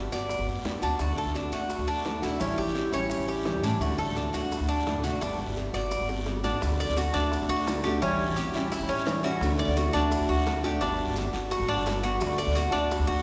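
Bathed in a long cathedral reverb, as if played in a church or concert hall, this relaxed passage of Cuban son and guajira moves at 171 BPM in D major, cycling through Gmaj7, D and A7. Up front, a bright, metallic Cuban tres with double strings plays arpeggios over a woody, thumpy pizzicato upright bass on gut strings, while a full-bodied jumbo steel-string acoustic guitar picks the accompaniment with audible finger squeak. Tight, high-tuned bongos struck with hard hands, a raspy, band-limited guiro and grainy maracas sit in the background, and a drum fill at 6.1 s leads into the second section.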